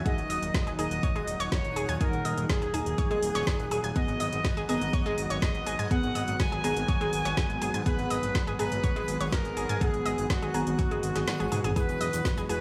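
Progressive house with a driving, bittersweet mood, built on an up-front deep electronic kick, a deep house kit with woody snare and smooth hats, and a fat, detuned analog bass, while a smooth, expressive synth lead with vibrato carries the melody over round, nasal analog pluck arpeggios. Beneath them sit a warm analog pad of sustained chords and deep mellow chord stabs with phaser and tape echo, both in the background and pumping to the sidechain, topped by a very quiet twinkling granular shimmer. The kick drops out for a drum fill at 11.3 seconds, and a grainy egg shaker enters at 11.8 seconds as the harmony moves from D#m through G#m7 to Eadd9, all in a light digital ambience.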